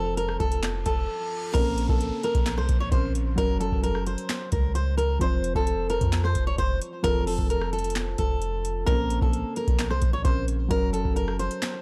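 Dark and hard-hitting, this half-time trap passage, cut from a longer piece, sets an up-front, fingerpicked steel-string acoustic guitar melody, touched with tape echo and audible finger squeak, over a mellow, boxy grand piano and a deep, sine-like 808-style bass with a fast attack. A booming analog drum machine with a deep kick, crisp snare, metallic hats, handclaps, rim clicks and crash enters at 0.2 seconds, while a reverse cymbal and downlifter lead into a short break at 1.1 seconds before the main section lands at 1.5 seconds. The dry, gritty hardware recording sits in a digital ambience.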